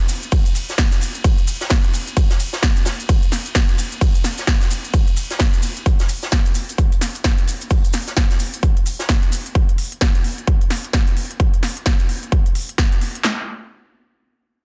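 Aggressive and bouncy, this house excerpt runs at 130 BPM in 4/4 with a 60% swing on the sixteenths, opening straight into a drop that lasts until 5.9 seconds. Two layered electronic big-room dance kits sit up front in a large room: one carries a punchy kick, snare and handclaps, the other crisp hi-hats, ride cymbal and a tape-warm snare. A dry compact cocktail kit with a high-tuned snare and pumping, high-passed hats and a grainy, bright cabasa sit in the background until 9.5 seconds, all under studio reverb in a dense, heavily limited master.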